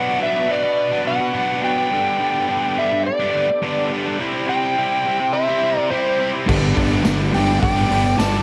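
An overdriven slide guitar carries the melody in this gritty, brooding classic rock excerpt at 105 BPM in 4/4. It rides over a picked, double-tracked electric guitar riff and sustained tonewheel organ chords colored by slow rotary speaker, light overdrive and chorus vibrato, as the harmony moves through Bm, Gadd9 and C. A dark octave-fuzz lead guitar adds a distorted second line in the background from 5.3 seconds, and at 6.5 seconds a crunchy background riff guitar, a round fuzz fingered bass and a saturated garage drum kit with punchy kick, snare, hi-hat and crash arrive, joined at 7.1 seconds by a jingly tambourine, all set in a moderate echo-chamber reverb.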